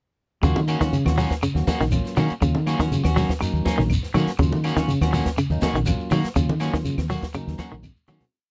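From the start, a hypnotic, intense afrobeat groove at 122 BPM in Eb minor opens on an Ebm7 chord, driven by a compact cocktail drum kit with a punchy kick and high-tuned snare, soft-handed, damped congas and a grainy, distant shekere in the background, woody claves tapping a five-stroke time line from 0.7 s, and a round fingered electric bass playing a syncopated riff, while a clean electric guitar repeats an arpeggiated ostinato, a slightly broken-up picked electric guitar strums upper chord shapes with subtle chorus, and a bell-like tine electric piano adds rootless syncopated stabs through a phaser, all captured in a close 1970s-style studio recording with little reverb that fades out from 6.4 s before a closing drum fill at 7.8 s.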